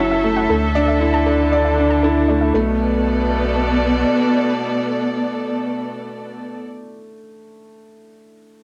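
A home cassette recording in a small, close booth gives this moving, intimate piano-and-strings electronica fragment its snug character, opening on a drop as Dsus2 gives way to Bm7 at 2.5 seconds. A boxy grand piano with audible action noise and long sustain carries a tape-echoed riff throughout, while a veiled, con sordino chamber string section bowed up front holds dark sustained chords through plate reverb. A deep, round sine sub bass lasts until 4.0 seconds, and a very quiet, gentle filtered pluck with chorus traces arpeggios until 2.8 seconds.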